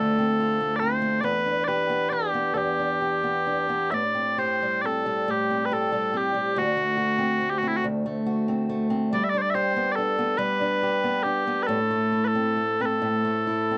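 Mellow, sweet small bagpipes carry a continuous solo melody up front through this haunting, longing Celtic slow air, moving in a loose, rubato 6/8 with uneven beats. An old ladder-braced acoustic guitar, also close up front, fingerpicks a dark accompaniment beneath, with the occasional finger squeak, over a progression through Dm7, Em7, Am7, D7 and G that settles on A minor at 11.7 seconds. Light reverb and a dark, warm production wrap this brief 13.8-second excerpt cut from a longer piece.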